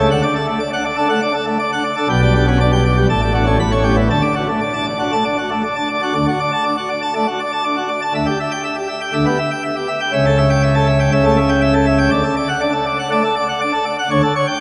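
Classical organ toccata in D major at 120 BPM, jubilant and brilliant, played by a solo pipe organ on full plenum with mixtures, its baroque voicing bright with chiff and set up front. The wet cathedral reverb, with a 5.2-second decay, surrounds the organ as it moves from D through G/B and A9 in the opening section, then shifts at 6.2 s into a second section built on Em7/D and A7/C#. This short cut from a longer piece ends at 14.6 s on A7/D.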